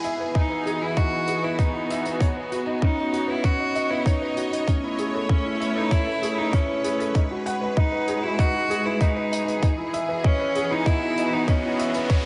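Bathed in a moderate concert-hall reverb with a softened top end, this tender, luminous piano-and-strings electronica excerpt builds as a felt-muted upright piano riff, mellow with audible action noise and delay, rests on the sustained chords of a rich, bowed symphonic string section with sidechain pumping, while a clear cello melody with vibrato and delay sings up front, a tight electronic kick sits forward alongside a brushed hi-hat, and a background riser enters at 11.3 s.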